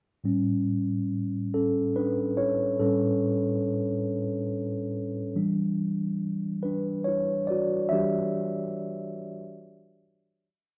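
Set in a moderate studio reverb with a live-room feel, this short, late-night and sultry R&B piece in E dorian moves at a slow 47 BPM in 6/8, with a mellow, clean tine electric piano played solo up front, holding rootless chords that pass from A7 to Em9 at 5.4 seconds before fading out from 7.9 to 10.5 seconds.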